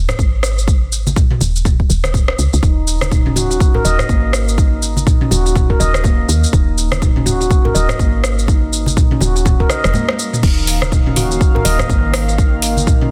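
Dry, dense and heavily limited, this afro house excerpt moves at 123 BPM in Eb minor with a swung 16th-note feel, driving and spiritual in mood. A punchy, layered electronic kick sits up front over a dark, round FM bass that pumps with the sidechain. An overdriven afro-pop kit with metallic hats, rim clicks, shaker, crash and toms, along with soft-handed congas in the background, fills out the groove. A ringing, meditative handpan plays delayed arpeggios from 2.6 seconds, a drum fill marks a short break at 9.9 seconds, and a smooth, detuned sawtooth analog pad with chorus enters at 10.4 seconds.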